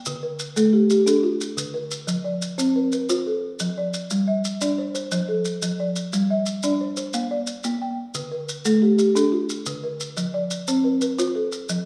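A woody, rustic folk marimba with medium mallets sits up front, spinning mbira-style interlocking arpeggios from D3 to G5 with a slapback echo over Dm, F, G5 and Bb, while close, grainy maracas keep time beneath it in this hypnotic southern African traditional passage, cut from a longer piece and set at 119 BPM in 12/8 within a wet recital hall reverb.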